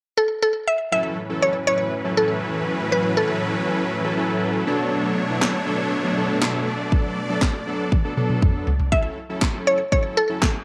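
A light reverb sets this driving, confident dance-pop cut, taken from a longer piece, in a modest space, tuned slightly low to A4 = 436 Hz and moving at 120 BPM in a straight 4/4. A woody, round mallet-like synth pluck opens the melody at 0.2 seconds, its FM tone carrying a noise layer, chorus and slapback echo. Soon after, a fat, detuned polysynth and huge, lush supersaw chords fill out the harmony with a sub octave beneath, both pumping against the sidechain as the chords move from A6 to Bm7. A punchy, tape-toned house drum kit arrives at 5.4 seconds with cracking snare, handclaps, kick and toms, sounding as if re-recorded in a large room, and it plays a drum fill from 7.9 seconds. When the supersaws drop out, the pluck returns over the polysynth and drums for a brief closing section back on A6.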